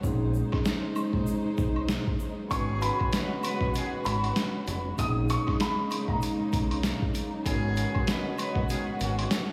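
Reflective yet tough, this boom-bap hip-hop excerpt moves at 97 BPM with a swung 16th-note feel, opening on a break where a gritty, pitched-down sampler-style drum kit with a thumpy kick sits up front beside a round, deep fingered electric bass, a mellow vibraphone with soft mallets and slow motor vibrato carrying a cassette-tape tint, lush bowed studio strings holding sustained chords, and egg shaker with woodblock tucked in the background. At 2.5 seconds a woody upright piano with audible action noise takes the melody through chorus and analog delay until 7.4 seconds, while a distant horn section adds delayed stabs over chords moving from A#m11 to G#m7. The whole mix is dreamy and soaked in a church reverb.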